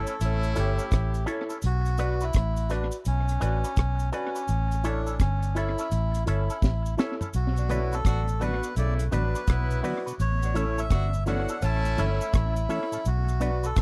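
A dark, round, foam-muted electric bass sits up front in this hypnotic, laid-back roots reggae excerpt in B minor at 84 BPM, swinging gently over alternating A and B minor chords. A reedy, breathy melodica carries the melody with tape echo, backed by woody upright piano stabs with audible action noise, a twangy envelope-filtered guitar with spring reverb in the background, a dry deep drum kit with a high-tuned snare and tight kick, and a faint band-limited cabasa. After a drum fill at 6.6 seconds, a smooth jazz-style horn section returns at 7.6 seconds alongside a soft, flute-like tonewheel organ with slow rotary speaker, all captured in a close, dry 1970s-style studio sound.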